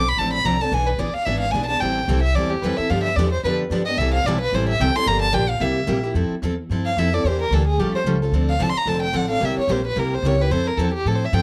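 A small room with light reverb surrounds this charming, playful excerpt of acoustic string swing in the jazz manouche style. A single bowed violin carries the melody up front for the full 11.4 seconds, played sul tasto with a soft attack, light vibrato and an airy tone that keeps the lead warm, intimate and close. Beside it, a bright, picked steel-string dreadnought guitar supplies the accompaniment, with a touch of finger squeak audible on the strings. Underneath, a pizzicato upright bass strung with gut adds a woody, thumpy low end. The swung harmony moves through chords such as Dm7, E7 and C6 before shifting at 6.2 seconds into a second pass that opens on Fmaj9, passes through Aaug7 and C7b9, and settles on Fmaj7 as the violin solos on.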